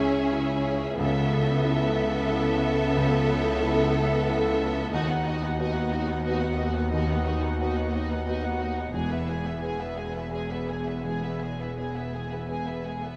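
This cinematic fragment, cut from a longer piece, opens with the full ensemble at once: dark, expressive first violins carry the melody with soft attacks, vibrato and portamento, over a focused second violin line and a background bed of violas. Its mood is bittersweet and full of longing, moving in a rubato 3/4 at roughly 82-92 BPM through C#m, Aadd9/C#, B/D# and finally E at 8.9 seconds. A grand piano with long sustain sits in the background, joined by soft-edged French horns holding chords until 12.8 seconds and a very quiet, ringing fingerpicked harp playing arpeggios. Close, rich cellos and distant, smooth double basses anchor the bass until 13.0 seconds. The whole is set in a wet concert hall reverb, lending the bowed strings a lush, enveloping space.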